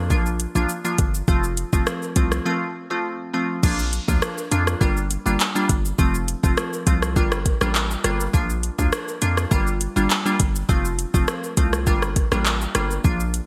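A glassy, crystalline wavetable pluck with chorus and a punchy, heavy 808-style bass open this hypnotic, sultry dancehall excerpt in G minor at 102 BPM, joined at 0.1 seconds by an up-front electronic afro-pop kit with a deep kick, metallic hi-hats, rim clicks, handclaps, shaker and crash cymbal under gated reverb. The bright, up-front pluck carries ring modulation and a filter sweep over chords moving between Bb, F and Gm7, while the sine-based bass hits with a fast attack and a decaying tail. After a break from 2.5 to 3.6 seconds the groove settles into its second section, framed by light digital ambience and a bright 1980s-style digital production.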